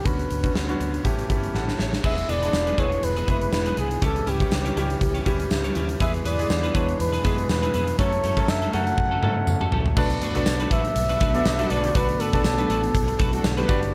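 In a moderately roomy mix, this urgent, moody 1980s-style pop excerpt sets a mellow flugelhorn melody with vibrato and scooped notes, echoed and plated, over clear concert grand piano, a dark, round muted electric bass and a huge arena drum kit with a punchy kick, gated reverb and bright cymbals, as a chorused clean electric guitar riff enters at 2.0 s, a jingly tambourine and a very quiet glassy FM pad follow, and fat, detuned analog synth brass stabs arrive at 11.3 s.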